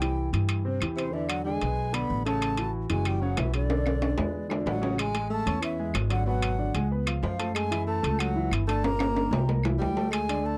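A sunny, danceable Afro-Cuban jazz excerpt in A major at a brisk 187 BPM in straight 4/4 opens with an airy, vibrato-laden concert flute carrying the melody, a subtone tenor saxophone playing a second line beneath it, a grand piano with natural, long sustain, a growly, thumpy upright bass placed up front with transformer saturation, and ringing metal-shell timbales that sound compressed and saturated. Woody claves join in the background at 0.5 s, and drum fills arrive at 3.7 s and 8.8 s as the harmony moves through chords such as E7, Amaj7, C#7 and F#m9. The flute's lifted highs and slightly unsteady, tongued phrasing sit in a dry, close 1970s-style studio sound touched with light reverb.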